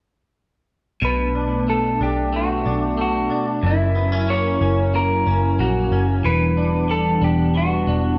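A straight 4/4 pulse at 92 BPM carries this melancholic, ethereal dream pop excerpt in B minor, cut from a longer piece, with all four parts entering together at 1.0 seconds and running to 8.2 seconds. A vintage muted picked electric bass sits up front, round and dark with a foam-muted tone, holding the low end between E1 and B1. A clean electric guitar plays arpeggios, bright, compressed and twangy with a scooped character, washed in ensemble chorus and delay. Over this, an electric guitar through a small old amp carries the melody between E4 and C#5, slightly broken-up and lo-fi, while a hollow soft pad sustains nasal, flute-like chords with a detuned shimmer of chorus. The harmony moves from Bm7 to F#7 at 3.6 seconds and Em7 at 6.2 seconds, all set in a lush hall reverb and colored by worn cassette tape with warbly pitch drift.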